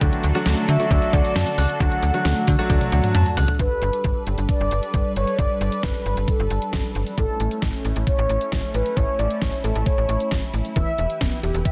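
A dense, heavily limited modern master sits in a moderate recital-hall reverb on this melancholic, cool synth-pop excerpt at 134 BPM in 4/4, tuned to A4 = 436 Hz and moving from D through Gadd9 and A to Em. An up-front, thumpy detuned 8-bit drum machine with a medium-tuned snare and a snappy, metallic FM slap bass drive it beneath a swirling, evolving sawtooth pad with phaser and chorus. An intimate grand piano with audible action noise and a clean tine electric piano with tape echo open the passage, the piano stopping at 3.2 s; from 0.7 s a round, horn-like synth lead with chorus, vibrato and a filter sweep carries the melody, and after a drum fill the electric piano returns in the background at 10.8 s.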